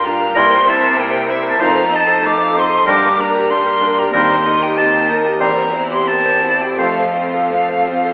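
Heard from further back in a wet recital hall with a thin, telephone-like tone, this short cut from a lyrical, passionate classical piece moves in a rubato 4/4 at roughly 81-96 BPM, its harmony travelling from C7 to a closing F. A clear concert grand piano carries the melody up front, with audible action noise, deep bass and long sustain, while a dark chamber violin section also carries the melody softly in the background. A pure, silvery flute sings a second line alongside woody studio violins, a very quiet viola section and a rich, floating cello bass. From 0.3 s to 7.0 s a punchy vintage oboe and a dusky French horn section add a further line and sustained chords, joined from 0.4 s to 7.0 s by a mellow clarinet and a roomy bassoon.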